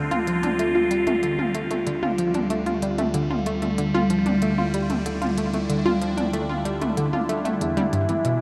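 Ambient, sequencer-driven space music with a cosmic, mysterious mood, taken from a longer piece and set in a straight four-four pulse. An evolving wavetable pad holds sustained chords up front, its detuned, morphing sine tone brightened by phaser and its own reverb. Beside it an analog pluck plays a riff with a fast attack and quick decay, its detuned sawtooth and wave-folded edges given extra shimmer by chorus and tape echo. Underneath, an analog drone fades in as a low bass with a resonant, pulse-width-modulated sawtooth colour, while a minimal click drum kit enters at 0.1 seconds with clicky hi-hats and toms, re-recorded in a small room and trailed by tape echo. At 7.6 seconds, as the harmony moves from Dmadd9 to Em, a soft octave-layered synth lead arrives on a single high note, round and dark with a sub octave, vibrato, tremolo and a cassette-tape haze. The whole mix sits in a vast, echoing space, washed by a long cathedral reverb.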